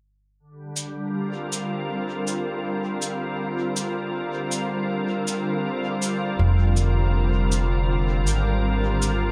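A woody, pizzicato upright bass on steel strings sits up front and is the loudest voice, but it arrives only at 6.4 seconds, low and dark in its register. Before it, an organ-like additive pad of pure, detuned sine tones opens at 0.6 seconds, holding sustained chords with a slow attack and long release, coloured by ensemble chorus and its own reverb. A quiet acoustic cabasa joins at 0.8 seconds, with a smooth, brushed quality and a rolled-off top, as if heard in a small room. This ambient dub excerpt moves at 80 BPM in 4/4 with a swung sixteenth-note feel, resting on an Fsus2 chord in F dorian. The echo-heavy mix, with studio reverb and a faint mains hum, gives the fragment, cut from a longer piece, a deep and spacious mood.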